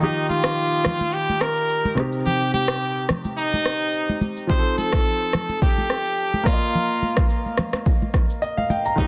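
A lightly swung 16th-note groove at 107 BPM in 4/4 drives this romantic, joyful afrobeats passage in Eb major, built on an up-front, electronic deep house kit with a punchy kick, rim click, shaker and soft clipping on the snare, alongside close, dry congas with a thick, damped skin. Over Ebadd9, Cm, F7 and Bbsus4 chords, a brilliant, forceful trumpet carries the pop-style solo melody with light vibrato and a roomy, distant character, while an intimate, polished grand piano accompanies with long sustain and audible action noise. A fat, detuned sawtooth analog bass slips in at 9.0 s in the background, and the piece sits in light reverb with a dense, heavily limited modern master.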